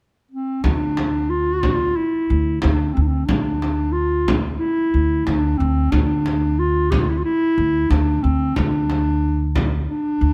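The recording has a light reverb, with all three instruments placed close up front. This melancholic, soulful passage, cut from a longer Turkish makam ensemble piece, moves at 91 BPM in a straight 4/4, tuned to A4 = 445 Hz. A mellow clarinet with a smooth top carries the solo melody in a classical style, staying between C4 and G4 and opening alone at 0.3 s. At 0.6 s an acoustic upright bass joins, played pizzicato on steel strings with a woody, warm tone, holding on D2. A deep, large frame drum enters at the same moment, struck with hard hands and carrying a distant, large-room character. Together they shape a single sustained section of melancholic, soulful feeling.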